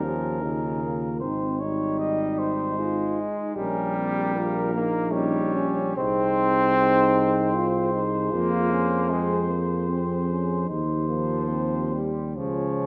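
A warm flugelhorn carries the melody from the first moment, sung with light vibrato in a vintage, classical manner between Bb4 and Eb5, while a mellow French horn section shapes a smooth, tight second line in the background. This is a tender, hymn-like classical piece for brass band in Ab major, moving at 76 BPM in a rubato 3/4. Underneath, a bright trombone sits up front in the accompaniment, joined by a clear euphonium that sounds distant and roomy, both touched with light vibrato. A mellow tuba anchors the bass from Ab1 to F2 with a soft attack, also placed up front. The harmony opens on Eb7 before settling onto Ab, then passes through Gdim/Bb, Ab/C and Fm to close on Cm/Eb, all in a moderate scoring-stage reverb. All five parts play together throughout this 12.9-second passage, which is cut from a longer piece.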